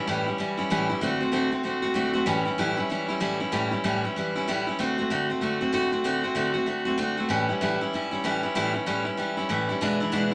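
Rollicking and retro, this short swung rock fragment at 191 BPM in A mixolydian features a lone picked steel-string acoustic guitar, bright and full-bodied with a dreadnought's depth and audible finger squeak, sitting up front in a moderate large-studio reverb as it moves through A7, D7 and E7 chords over about 10.3 seconds.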